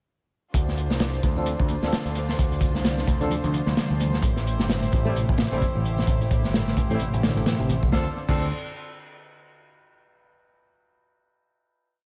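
Energetic and swaggering, this breakbeat piece in D minor runs at 130 BPM with a 16th-note swing, built on a crunchy, saturated looped break with a punchy kick and dark cymbals, an overdriven picked electric bass in a dotted rhythm, an overdriven tambourine layer in the background, very quiet hard-hand congas and rich, earthy bowed chamber strings pumping under sidechain; clear horn stabs arrive at 1.4 seconds, moving one chord shape in parallel through a filter sweep, and a reedy electric piano with fast tremolo and 12-bit sampler grit enters at 2.5 seconds with a repeating 16-step riff, all within an echo-heavy mix that settles on a final Dm7 chord at 7.9 seconds.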